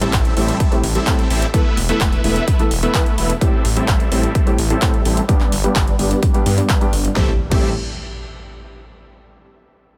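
A huge, euphoric supersaw lead carries the riff in this emotional, powerful festival progressive house excerpt at 128 BPM in A minor, its bright, detuned unison tone passed through a phaser, a low-pass filter sweep, dub echo and sidechain pumping. Beneath it, a thick, menacing detuned saw bass with a beating, saturated tone pumps in time with the kick, while a soft, felt-muted upright piano adds intimate, mellow chords with audible action noise, also treated with dub echo and pumping. The punchy electronic kick sits up front and loudest in the mix, joined by a layered big-room kit with a massive snare, handclaps, metallic hi-hats and crash cymbal. The harmony moves through Am7, Esus4 and G before returning to Am7, and a very quiet electronic impact opens the passage. The piano, lead and bass drop out at 7.7 s, leaving the impact, which returns at 7.3 s, to carry the brief closing section in a dry, close-sounding mix.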